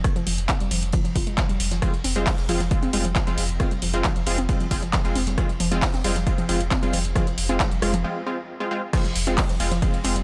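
Intense and hypnotic, this excerpt of driving peak-time techno moves in a straight 4/4 over an F minor chord. An overdriven, punchy analog kick sits up front, joined by a layered techno kit with metallic hats, handclaps, rim clicks, ride and crash, while a brushed acoustic kit with dark cymbals and a high-tuned snare murmurs in the background, its hats and cymbals pumping and filtered thin. Underneath, a round sine sub bass holds F1 through tube saturation, sidechain pumping and a low-pass filter. A warbling, lo-fi pluck enters at 0.2 seconds, its mellow square and sawtooth tone colored by chorus, saturation and dub echo, and a detuned unison supersaw stab arrives at 1.8 seconds, also pumping and trailing echo. After a break from 8.0 seconds, the drop lands at 8.9 seconds, all set in a light reverb and small-room ambience.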